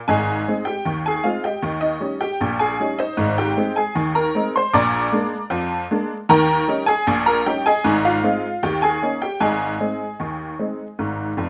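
A jangly, detuned honky-tonk upright piano plays alone and up front in this playful, cheerful ragtime excerpt at 77 BPM in a straight 2/4 feel, its bright, vintage tone ranging from F1 to D6 as it moves through Ab, Eb7 and Bb7 chords in Ab major, set in moderate studio reverb with a layer of vinyl crackle.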